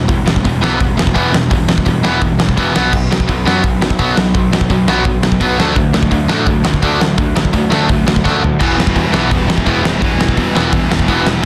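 Angry and urgent, this punk rock excerpt charges ahead with a crunchy overdriven guitar riff, a tight distorted guitar in the background and a growly fuzz electric bass, all driven by a big, up-front acoustic drum kit with a fat snare and punchy kick in a large room. After a drum fill at 8.2 seconds, a double-tracked twin of the background guitar joins at 8.6 seconds as the chords return to Em. The dense, heavily limited master carries light reverb.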